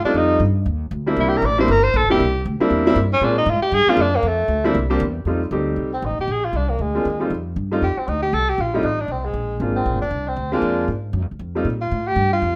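A rough home-demo mix bathed in wet studio reverb frames this relaxed, sophisticated swing jazz excerpt, where a breathy, vintage tenor saxophone with vibrato carries the melody and solos through the first 5.3 seconds, a dark, growly pizzicato upright bass with a woody steel-string tone anchors the low end, and a clear, intimate upright piano with audible action noise comps from 0.1 to 11.7 seconds, all three sitting up front over F9, C9, Bb9 and Fadd9 harmonies.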